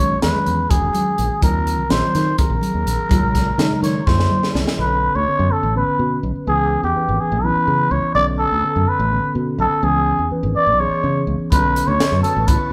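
A live, one-room sound with moderate large-studio reverb frames this slick, driving electric jazz fusion in 7/8 at 250 BPM, where an up-front cup-muted trumpet leads with a breathy, growling tone over mellow phased tine electric piano and foam-muted fingered bass, while a punchy, gritty drum kit and vintage background congas drive the opening until a drum fill at 4.1 s carries the music from Eb dorian into B dorian, with kit and congas returning at 11.5 s alongside a dark, sawtooth string-machine cello pad with ensemble chorus.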